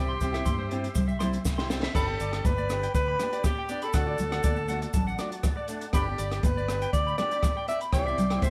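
A breathy alto saxophone sings a subtone jazz melody up front over dark fingerpicked nylon-string guitar, a round, punchy fingered electric bass and a mellow tonewheel organ holding background chords through a slow rotary speaker and chorus vibrato; a twangy, slightly broken-up electric guitar adds picked arpeggios from 0.1 seconds, and from 0.2 seconds a smooth cocktail drum kit with a high-tuned snare, bright congas and grainy maracas join in a sunny highlife groove, with a short drum fill leading into the shift from C to G at 2.0 seconds, the band playing live together in a lightly reverberant room in this passage cut from a longer piece.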